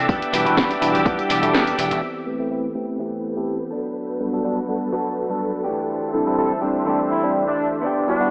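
This funky, nostalgic filtered disco house excerpt at 124 BPM in A dorian opens on lush, sawtooth string-machine chords with ensemble chorus, a bright, clean, directly recorded electric guitar riff, and amped slap bass, all pumping against the sidechain under a low-pass filter, while the string machine and guitar also carry a gritty 12-bit sampler edge. A punchy, tape-warm electronic kick and a house kit with a cracking snare, pumping hats and tambourine drive the first bars, alongside a very quiet layer of tambourine, maracas and group handclaps and a worn, slightly out-of-tune tine electric piano through a phaser. At 2.0 seconds the bass and house kit stop as the chords move from Em7 through Am9 and Gmaj9 to C69, and at 6.4 seconds a brilliant, tight trumpet section enters with a vibrato-laden melody, all bathed in a lush hall reverb and an AM-radio tone.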